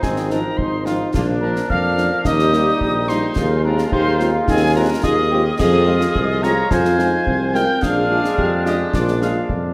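A wet scoring-stage reverb surrounds this spirited, rousing wind-band march, cut from a longer piece, as it strides at 108 BPM in a straight 2/4. A dark, distant cornet carries the melody with light vibrato, while a pure wooden piccolo, a clear woodwind section and a background euphonium weave second lines over tight, vintage trombone chords and a very quiet French horn section entering at 0.3 seconds. Up front, a punchy tuba anchors the bass, and close, dry concert snare, bass drum and dark clash cymbals drive the march through chords moving from Fm7/Ab to Bb7.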